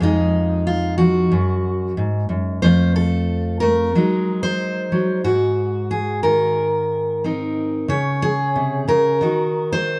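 A moderate large-studio reverb gives space to a full-bodied jumbo steel-string acoustic guitar, fingerpicked and placed up front, playing solo through this 10-second cut from a longer folk piece. At a straight 91 BPM in 4/4, the mood is pastoral and warm, with the guitar ranging from F2 to Db5. It moves through Fm7, Gbsus2, F, Ebm/Gb and Abadd9 before reaching Db5 and Ebm.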